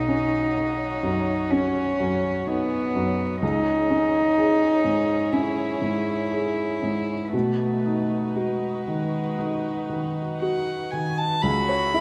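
A felt-muted upright piano with audible action noise opens this reflective, melancholic neoclassical excerpt in C# minor, playing a mellow, intimate accompaniment at a rubato 58-64 BPM beside a rich, floating cello second line played sul tasto and a chamber string section holding soft sustained chords with light vibrato, all in a moderate recital hall reverb, before a pure, distant-sounding solo violin enters with the melody at 10.4 seconds as the harmony moves from Badd9 through C#m and G#m7 back to C#m.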